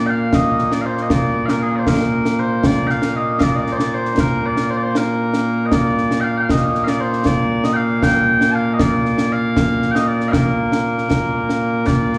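Scottish traditional pipe music in a proud, ceremonial 6/8 at 78 BPM in Bb major, with mellow, sweet small bagpipes carrying a continuous solo melody up front from the start, touched by slapback echo, while a close, dry concert snare and bass drum with bright cymbals join at 0.3 seconds, all heard as a live gig through the venue's PA with moderate club reverb and small room ambience in this cut from a longer piece.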